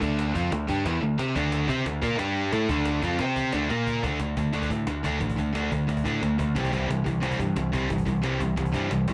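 Lightly reverberant, this angry, urgent punk rock excerpt pairs two warm, overdriven electric guitar riffs in the background, one of them double-tracked and one dropping out at 4.0 seconds, with a growling, overdriven picked bass and a bright, distorted guitar riff that enters up front at 1.4 seconds, all driven by a snappy acoustic cajon with snares in a live room that plays a fill from 3.7 seconds.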